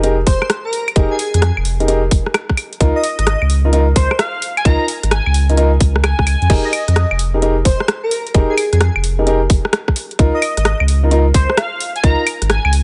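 A tight, layered electronic kick drum sits up front in this moody, soulful two-step UK garage piece, cut from a longer track, moving at 130 BPM in F minor with a swung sixteenth-note feel. Beneath it, a deep, thick saturated sub bass with a fast attack sustains notes between F1 and F2, while a garage drum kit adds claves, rim clicks, a crash cymbal and metallic hi-hats. A dark grand piano plays mellow, intimate stabs with a boxy tone, audible action noise and long sustain, its tape echo trailing behind the chords as the progression moves from Fm11 to Db69 twice. Above, an airy, dreamy lead carries the melody from 0.3 seconds to 12.7 seconds; it is built from soft, detuned sine voices in unison with a noise layer and a moving notch, and is coloured by chorus, vibrato and tape echo. The sound is dry and close, with a rolled-off top end.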